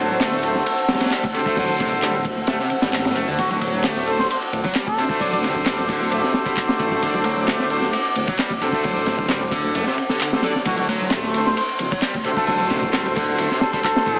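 Energetic, funky breakbeat at 132 BPM, built on a crunchy, punchy drum kit whose kick drops out from 2.5 to 3.4 seconds, with electronic tambourine and handclaps, damped high-tuned congas in the background, a thick, menacing detuned saw bass, a bright double-tracked fuzz guitar riff with gritty sampler texture and dub echo, clear jazz-style horn stabs, a deep, moody analog pad pumping beneath the sustained D7 harmony, and a veiled cup-muted trumpet melody entering at 3.4 and again at 10.7 seconds through a telephone-like filter, all pressed into a heavily compressed, small-speaker radio sound with a moderate plate reverb.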